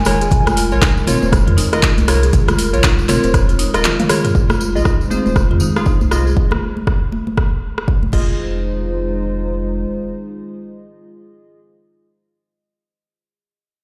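Heard through a big sound system in a bare room with large studio reverb, this spiritual afro house cut moves at 119 BPM in F minor pentatonic with a swung sixteenth feel and a warm glow. A distant bamboo bansuri phrase opens over a moody, detuned analog pad with chorus and sidechain pumping, while a buzzing, woody marimba plays delayed arpeggios in the background, round, wave-folded analog keys add stabs, and a mellow sine sub bass pumps underneath. A deep house kit with metallic hats, handclaps, rim clicks, toms and crash, bright close congas and a jingly tambourine come in at 0.1 s, an up-front electronic kick joins at 0.3 s, and a drum fill at 3.8 s leads into a filter sweep on the pad at 4.3 s.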